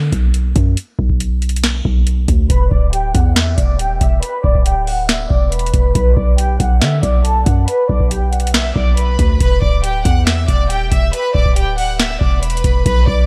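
Lightly reverberant, this dark, menacing trap cut is taken from a longer hip hop piece, moving at 139 BPM in 4/4 with a half-time feel in E minor, tuned slightly sharp to A4 = 441 Hz. A deep, boomy 808-style bass with a sine-like tone, fast attack and mellow decay opens the track at 0.0 s, and a dry, booming analog drum machine joins at 0.1 s. Together they sit up front with a deep kick, crisp snare, metallic hi-hats and finger snaps. At 2.5 s a studio violin section enters with a lush, bowed ensemble sound, played with vibrato and soft, expressive attacks. The strings sit distant in the mix, softened by a low-pass filter and trailed by tape echo. The harmony alternates between Bm and Em7, giving the loop a brooding, unresolved pull.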